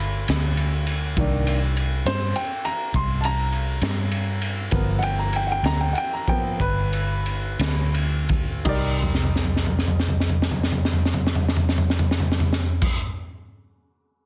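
Slow blues in C minor and 12/8 at around 55-68 BPM, smoky and brooding: a woody, polished upright piano takes a solo from the start over a round, foam-muted vintage electric bass and an up-front, gritty, saturated breakbeat kit with punchy kick, high-tuned snare and dark cymbals, the tempo slowing from 3.5 to 8.7 seconds before the harmony settles on Cm7 and the drums play a fill from 9.0 seconds, set in light small-room reverb under a dense, heavily limited modern master.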